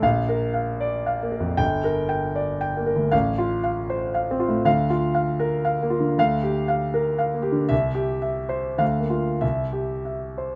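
Closely miked and detailed with a light touch of reverb, this brief fragment of a longer work places a warm concert grand piano up front, its open tone anchored by a deep bass. It is a romantic character piece for solo piano in 3/4, played with free rubato and a passionate, lyrical feel, spanning G1 to G5 and tuned to A4 = 439 Hz. The harmony moves through Bb, Gm, F/A, Bb/D, Gm7/D and C before alternating between Bb/D and C by the close at 10.6 seconds.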